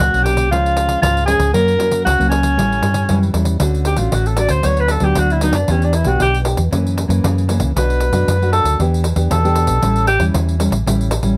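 Joyful and sunny, this samba and choro excerpt features a breathy, whispered alto saxophone up front with light vibrato and a soft attack, stepping into a jazz-style solo at 3.6 s. Beneath it, a thumb-plucked classical nylon-string guitar adds warm accompaniment, a dark, round hollow-body electric bass sits prominently, and a jingly, close and dry pandeiro keeps the groove. Light reverb and close, detailed miking give the recording an intimate clarity as the harmony moves through chords such as Dmaj7, Em7 and F#7.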